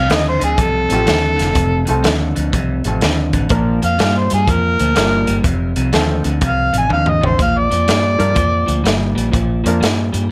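Swaggering and soulful, this electric blues shuffle moves at 124 BPM in 4/4 with a swung feel, sitting in F mixolydian with a slightly low tuning of A4 = 436 Hz. A mellow harmonica carries the melody up front with light vibrato, scooped notes and a soft attack, its smooth top edged by overdrive in a jazz-styled solo that ends at 9.0 seconds. Beneath it, an electric guitar through a small old amp picks a compressed, slightly broken-up riff, while a vintage muted fingered bass adds a dark, round, punchy low end. A crunchy breakbeat drum kit, saturated and gritty with a tight kick, medium-tuned snare and rolled-off top, drives the groove and drops in a fill at 6.9 seconds. A clear, woody upright piano, slightly detuned with long sustain, enters at 0.9 seconds to accompany over chords moving between F and Bb, all in a dry room with little reverb in this short cut from a longer piece.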